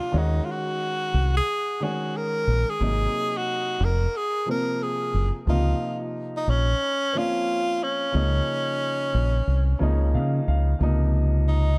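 A breathy, close-miked tenor saxophone sings the melody with vibrato and analog delay over a mellow, woody upright piano and a round, up-front dub electric bass in this cool, swung jazz-hop excerpt, moving through Ebm7, Ab7 and Dbmaj7 in a dry room before the piano adds a fill at 9.5 seconds.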